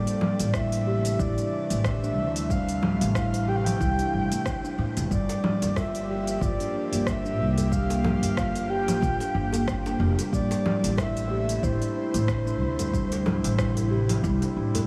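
Mystical and hypnotic, this organic downtempo excerpt moves at 92 BPM in a swung 4/4, drifting from Am to Gm7 and back. A breathy, flute-like synth lead with vibrato and analog delay carries the melody over a warbling, lo-fi tape-like pad with chorus, phaser and sidechain pumping, while a round, ringing steel tongue drum plays echoing arpeggios and a woody, growly pizzicato upright bass anchors the low end. An overdriven electronic kit of congas, smooth hats, rim click and shaker rides with a deep, layered electronic kick, a tight, cracking djembe joins in the background at 5.3 seconds, and the whole mix floats in a huge, dreamy ambient reverb.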